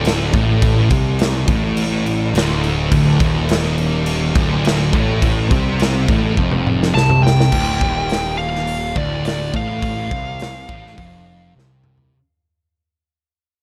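A big, up-front acoustic drum kit with a punchy kick, medium-tuned snare, toms and bright crash and hi-hat cymbals drives this ominous, sludgy stoner and doom metal excerpt in D minor at 104 BPM, with fills at 6.4 and 11.6 seconds. Two thick, dark fuzz guitars grind out a low riff in the background over an overdriven, punchy picked bass. A compressed lead guitar with delay arrives at 6.9 seconds to carry a high melody, shortly before the piece begins to fade out at 7.5 seconds, all within a dark, small-room production.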